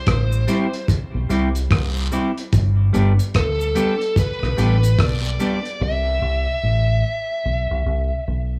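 A small-room studio ambience gives this short cut from a longer roots reggae piece a close, intimate sound with a sunny mood. At a relaxed 73 BPM in 4/4 with a swung sixteenth-note feel, a deep dub fingered electric bass sits round, dark and punchy up front, underpinning a simple move from C to G and back to C. A cloth-damped, thuddy drum kit of hi-hat, tight kick and rim click sounds muffled and gritty with a rolled-off top, while cabasa and guiro add a close, quiet acoustic texture. A dark, clean semi-hollow electric guitar handles the accompaniment with dub echo, and a bluesy overdriven lead guitar carries the melody in a picked, distorted voice, also treated with dub echo. At 5.8 seconds the drums drop out for a break, leaving the lead guitar to ring on until 8.2 seconds and the bass to close the passage at 8.6 seconds.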